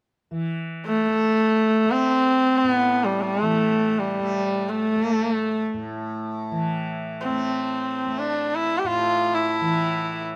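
Introspective and solemn, this short passage of Indian classical music, cut from a longer performance, unfolds in free time in raga Darbari on A. A mellow, softly plucked tanpura sets up a buzzing, shimmering drone from 0.3 seconds, sitting low and quiet beneath everything. At 0.9 seconds a single bowed sarangi enters up front, its clear, biting tone carrying an airy bow sound and an earthy grain. The player's gliding portamento and light vibrato shape the melody, while the instrument's sympathetic strings ring around each note. Light reverb gives the outdoor recording a touch of space, and both parts carry on until the passage breaks off at about 10 seconds.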